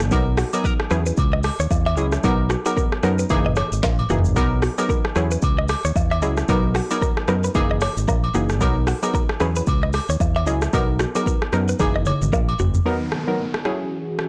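Swung sixteenths in 4/4 give this joyful, breezy afrobeats excerpt its lilt, carried by an up-front afro-pop kit with a deep kick, crisp hats, shaker, rim clicks, toms and a woody snare with soft clipping, plus agogo bells and woodblock, and a drum fill at 11.8 seconds. A warm fingered electric bass sits up front beside a glassy, detuned wavetable pluck with chorus, while a bright, clean, direct-recorded electric guitar plays a picked riff through digital delay. At 12.9 seconds a hollow, flute-like pad with chorus joins the pluck alongside an electronic downlifter, all within a blown-out, overdriven mix with light reverb.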